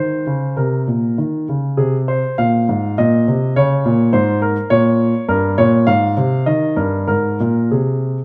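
A classical-period piano sonatina in A-flat major, this short excerpt from a longer piece has a playful, cheerful mood at 102 BPM in 3/4, with an uneven, rubato pulse that lets the phrasing breathe. A single grand piano carries everything alone from 0.0 to 8.2 seconds, ranging from G2 up to F5, and its tone is warm, polished and present, sitting up front in the sound. The opening E-flat above middle register leads into a suspended D-flat chord, then the harmony moves through A-flat, B-flat minor seventh and a G diminished colour before settling back on A-flat by way of E-flat. The close, detailed microphone placement catches the instrument clearly, while a moderate recital hall reverb of about 1.4 seconds adds a gentle sense of space around each phrase. The result is an intimate, playful snapshot of a recital performance.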